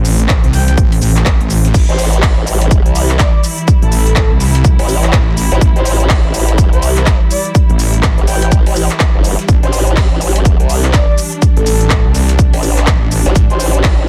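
This gritty, swaggering bass house passage in A minor at 124 BPM, in 4/4 with a swung 16th-note feel, opens at once on an A5 chord. A lush symphonic string section holds soft-attacked, bowed chords in the background under a low-pass filter and sidechain pumping, while a heavy, detuned sawtooth wobble bass sits up front with chorus, overdrive and the same pumping. A big-room dance drum kit with crisp hats, handclaps and crash cymbal starts alongside them, overdriven, and a dusty sampler-style kit adds a fat snare, shaker and high-passed hats further back. The punchy, overdriven electronic kick lands at 0.3 s, and a breathy, flute-like synth lead drifts in behind at 0.5 s with tremolo, vibrato, analog chorus and delay. At 1.9 s a second, saturated wobble bass built on a pulse wave joins up front, run through a formant filter, and the whole is a dense, heavily limited modern master set in digital ambience, cut from a longer track.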